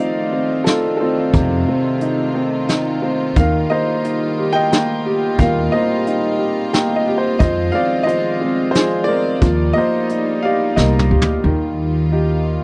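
Intimate and tender, this acoustic folk-pop ballad in 3/4 is led by a clear, woody upright piano melody over floating, softly bowed string chords, with a soft brush drum kit entering at 0.7 seconds, a thumpy pizzicato upright bass joining at 1.3 seconds, a piano fill around 6.4 seconds, a drum fill closing at 11.4 seconds, and a dry, close 1970s-style studio sound that keeps the piano, bass and drums up front.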